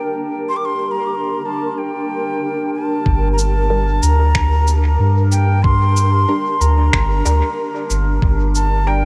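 An airy, distant concert flute with dub echo floats over a cloudy, granular pad in G minor from the start of this spacious, meditative ambient dub cut at 93 BPM with a swung feel, until at 3.1 seconds a round, up-front sub bass and a muffled, thumpy kick arrive, soon joined by pitched-down cabasa and finger snaps trailing dub echo and a muted, detuned chord stab with phaser sitting in the background.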